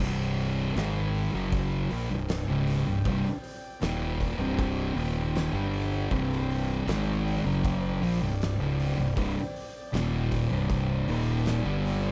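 A straight 4/4 pulse at 78 BPM drives this heavy, brooding stoner and doom metal passage, cut from a longer piece and resting on a single C minor chord. An oversized, low-tuned acoustic drum kit plays from the start with a boomy kick, fat snare, hi-hat and shadowy crash cymbal, set in a bright stone room whose ambience pumps around the hits. Two thick fuzz guitars carry the riff in the low register: one is up front with a rounded, warm tone, the other sits murkier and darker. Beneath them, a fingered electric bass adds a growly, overdriven low end that sounds both direct and amped. At 1.5 s a metallic, inharmonic FM drone fades in behind the band, holding eerie, mellow chords with a slow attack and long release, softened by chorus and its own reverb.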